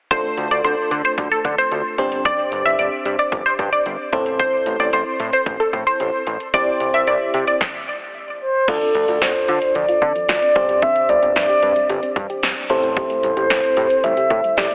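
A mellow, horn-like synth lead with chorus, vibrato and tape echo takes the front at 8.4 seconds in this driving, cool synth-pop excerpt, arriving after a punchy, funky polysynth comp that carries the second line until 7.6 seconds. Throughout, a tremolo-laden FM electric piano, a fat, detuned analog bass and a tape-warm analog drum machine play along, and from 8.7 seconds a soft, round pluck tucked in the background plays the arpeggios, all bathed in a lush hall reverb and squeezed into a heavily compressed, telephone-like radio sound.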